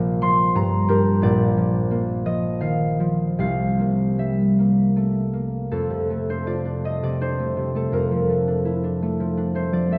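In a three-beat metre with a free, rubato feel, this peaceful, graceful classical piece for solo concert harp is a short passage cut from a longer work. The acoustic harp, thumb-plucked and ringing, sits up front with a warm tone, spanning from Bb1 up to D6 as it moves through lush harmonies such as Bbmaj9, Gm7 and C13, reaching F6 at 5.7 seconds. A wet church reverb surrounds it, with the listener placed further back in the room.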